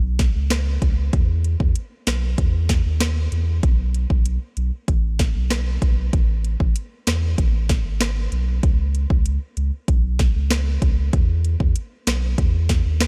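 Bouncy and summery, this dancehall groove sits in a straight 4/4 and comes from a longer piece. A round, sine-like sub bass opens the recording at 0.0 seconds, deep and sustained with a fast attack, holding the low end up front between G#1 and E2. At 0.2 seconds an electronic, produced afro-pop drum kit joins with a deep kick, a sharp snare, rim clicks and metallic hi-hats, its sound carrying a tape-like warmth. Both parts stay prominent and play through to the close at 13.1 seconds, repeating the same section twice with the change at 6.1 seconds. A digital ambience surrounds the pair, giving the lean arrangement a sense of space.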